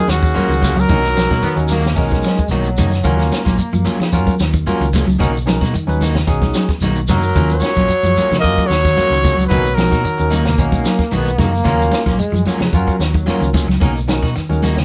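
Afrobeat at 111 BPM in Eb minor, this excerpt from a longer piece carries a defiant, intense mood as it rocks between Ebm9 and Bmaj7 chords. A breathy, whispered trumpet leads the melody up front with vibrato and a soft attack, while a raspy, gritty tenor saxophone plays a lower second line with scooped notes, both sounding in short phrases at the start and again from 7.1 seconds. A tight, bright trombone section adds its own punchy second line in two bursts, entering at 1.4 seconds. Underneath, a barky tine electric piano, lightly overdriven through a combo amp, holds the accompaniment, a clean electric guitar with spring reverb picks arpeggios in the background, and a second guitar, slightly broken-up, supplies picked stabs. A dark, round fingered bass anchors the groove alongside a dry compact cocktail kit with a high-tuned snare and punchy kick, grainy shekere, and ringing congas struck with hard hands further back. 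The band plays live in one room with light reverb, giving the whole cut a close, immediate feel.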